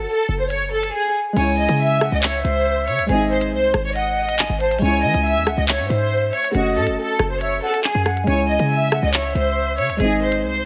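A lush, bowed violin section with vibrato and portamento carries the melody up front in this dark, tense half-time drill excerpt at 139 BPM in C# harmonic minor, its tone softened by a low-pass filter and trailed by delay. A punchy, tight 808-style bass and a crisp electronic drill kit of hi-hat, rim clicks, handclaps and crash cymbal sit forward beneath it. Near the end of a brief silent gap from 0.9 to 1.4 seconds, a mellow baby grand piano with audible action noise enters, and an airy, tongued jazz flute with delay follows as the gap closes, both joining over a C#m, G#, F#m progression. The mix has light reverb and a rolled-off top end.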